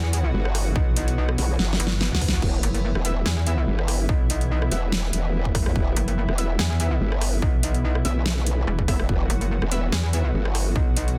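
Heavy wobble dubstep at 144 BPM in a swung half-time feel and E minor, this menacing, chaotic excerpt pairs an up-front metallic FM wobble bass with an aggressive, formant-filtered growl bass, both saturated and chorused, over a punchy electronic kick and a tape-tinged kit with a huge clipped snare, metallic hats, rim clicks and crashes that snaps into a drum fill at 1.6 seconds, while a lush, airy detuned pad pumps beneath and a bold orchestra-hit-like synth stab with reverb and delay enters in the background at 3.0 seconds, all inside a dense, heavily limited digital ambience.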